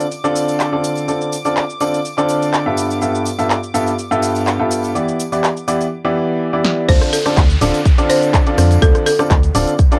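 A clear, up-front baby grand piano riff opens this soulful, bittersweet piano house excerpt at 124 BPM in D dorian, pumping with sidechain over a distant, reedy gut-string violin section that holds dark sustained chords until 5.9 seconds. A house kit of punchy snare, bright hats, handclaps, rim clicks and shaker plays alongside a very quiet, close tambourine. After a drum fill at 6.6 seconds, the drop at 6.9 seconds brings a punchy electronic kick, a hollow, organ-like FM bass with tube saturation, a woody hard-mallet marimba melody and an electronic downlifter, all carried by the character of a home cassette recording with moderate booth ambience.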